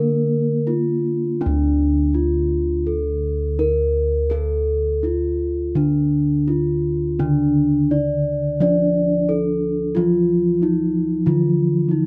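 A stately, shimmering excerpt of Javanese gamelan in D pelog at 84 BPM opens with a mellow bronze metallophone carrying the melody up front, a second bronze metallophone with paired tuning and a boxy small-room sound ringing beneath it before dropping out at 1.4 seconds and returning at 7.2 seconds, while round, beating bossed gongs hold the bass throughout, all captured close and dry with fine detail.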